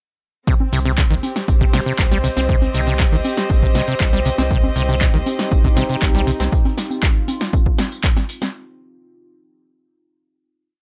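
A punchy, four-on-the-floor electronic kick sits up front at 119 BPM in straight 4/4, joined by an overdriven analog drum machine with metallic hats, a punchy snare and clap backbeat, congas and tambourine, all driving a raw, hypnotic acid house piece in C minor that stays in its drop on a single C minor chord. A squelchy, resonant sawtooth acid line with accents runs from 0.5 to 6.4 s through tube saturation, dub echo and sidechain pumping, over a round, deep square-and-sine bass in a dotted rhythm and a rich, earthy chamber string ensemble of bowed, slowly shifting chords. From 5.1 s a moody, detuned pad with chorus and phaser carries sustained chords to the close, all under light reverb.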